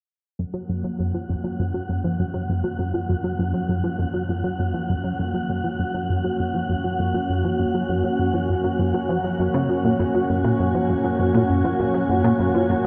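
Ambient, sequencer-driven space music with a cosmic, mysterious mood, in which a punchy, funky analog bass riff with ring modulation and tape echo sits up front from 0.4 seconds, a thick, warbling detuned pad holds bright sustained chords from 0.7 seconds, and an airy, breathy tuned-noise texture drifts in at 0.9 seconds, while filter sweeps move through both the bass and the pad and shimmer reverb places them in a vast, echoing cathedral-like space.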